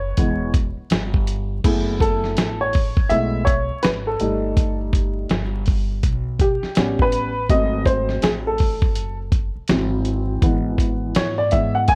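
Jazz-hop in F# minor at 82 BPM with a swung 16th feel, this mellow, nocturnal excerpt sets a dark, slightly detuned upright piano up front, its action noise audible as it solos over chords such as F#m11 and G#7b9, above a woody pizzicato upright bass on gut strings and a gritty, compressed sampler-style drum kit with a thumpy kick that enters at 0.2 seconds, while a digital ambience of warbling worn tape and vinyl crackle hangs over the mix.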